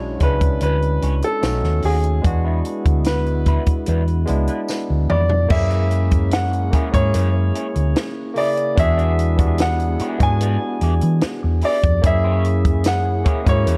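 A dry recording carries this cinematic, smooth slice of lush 1970s-style soul, where a clear, vintage concert grand piano sings the melody and takes a solo until 5.5 seconds, closing with a drum fill from the compact cocktail kit with its punchy kick, high-tuned snare and dark cymbals. Up front sits a round, hollow-body short-scale electric bass, while a barky, lightly overdriven tine electric piano fills in the harmony. Further back, a slightly broken-up, lo-fi electric guitar plays a wah-coloured riff, a tight trombone section with vibrato adds stabs, and a jingly tambourine enters at 1.4 seconds.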